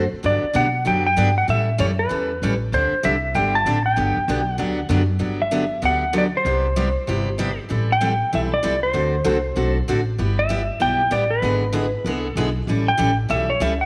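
A dark, compressed lap steel guitar carries the slide melody up front in this cheerful, down-home western swing excerpt, over a bright, full-bodied picked dreadnought acoustic guitar with audible finger squeak and a woody, growly pizzicato upright bass, the swung groove set in a wet echo-chamber reverb.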